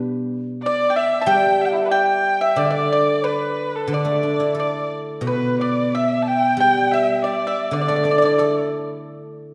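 This Chinese traditional chamber excerpt has a pastoral, festive mood and a rubato feel, opening at 0.0 s with a ringing, silvery guzheng up front, played with fingerpicks as accompaniment. Moments later, at 0.6 s, a mellow, hollow bamboo xiao takes the melody from the background with an airy, tongued straight tone. A single focused erhu, rich with vibrato and portamento, and a dry, percussive pipa weave second lines until 8.7 s, all set in the wet reverb of a church or concert hall.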